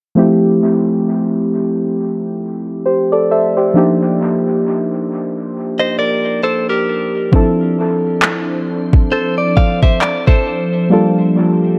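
Muted, felt-like synth keys carry this smooth, romantic contemporary R&B piece at 67 BPM in F major, their soft, dark tone treated with chorus and dub echo over Fmaj7, Ebmaj7, Dm7 and Gm7 chords with a swung 16th-note feel. A clean, direct-recorded electric guitar adds picked arpeggios from 5.8 seconds, and a smooth drum kit of soft kick and handclaps sits up front from 7.3 seconds. A glassy, ethereal FM pad with ensemble chorus and phaser holds sustained chords from 8.5 seconds in an echo-heavy mix with light reverb, cut from a longer piece.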